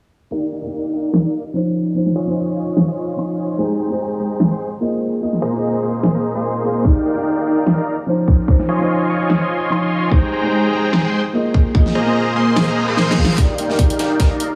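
Lightly reverberant and filtered, this euphoric, playful future bass fragment pairs a soft, boxy felt-muted upright piano, complete with audible action noise, with a huge, detuned supersaw riff carrying 12-bit sampler grit, sidechain pumping and tape echo under a filter sweep. Beneath them runs a half-time swung dubstep kit, overdriven, with a huge snare and bright hats, joined at 6.8 seconds by a punchy electronic kick. A background reverse cymbal and riser arrive at 12.7 seconds, a drum fill at 13.0 seconds leads into a build-up, and a very quiet saturated sub bass enters at 13.4 seconds.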